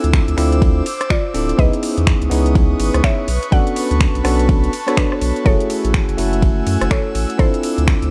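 An airy, breathy pad, bell-like tine electric piano stabs with tape echo and a round, tube-saturated sub bass open this late-night deep house excerpt, joined at once by smooth hats, finger snaps, ride cymbal and rim clicks, with a deep electronic kick sitting up front from 0.1 s. The pad, piano and bass all pump against the kick, and a swung sixteenth feel carries a cycle of minor ninth chords from Dm9 through C#m9, Bm9 and F#m9. At 1.1 s a woody, mallet-like FM pluck enters with the melody, its chorus and analog delay set in a dry, close-sounding mix.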